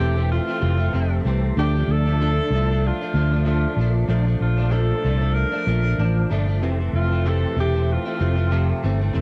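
A lightly reverberant home cassette recording frames this short, nostalgic slice of laid-back bedroom and indie pop, cut from a longer piece and carried by a gentle sixteenth-note swing over Fmaj7, Dm and Bbmaj7 chords. A punchy, vintage-toned alto saxophone with light vibrato and subtle chorus sings the forceful pop-style lead, while a direct-recorded clean electric guitar, picked and compressed, shimmers underneath with ensemble chorus, warbly pitch drift and plate reverb. Up front, a round, dark fingered electric bass anchors the mix.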